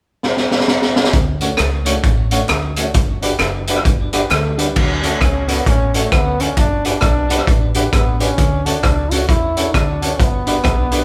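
A gritty, saturated garage drum kit with a punchy kick and high-tuned snare opens with a fill at 0.2 s, and at 1.1 s this upbeat, cheerful ska excerpt settles into a swung 132 BPM groove in D major as a dark, round dub bass enters, followed at 1.4 s by clean picked electric guitar with tape echo and woody, slightly detuned upright piano stabs, and at 1.6 s by very quiet crisp group handclaps, before a smooth-topped trombone with vibrato takes the lead melody at 4.3 s over alternating Dmaj7 and Gmaj7 chords, all captured as a band playing live in one large studio room.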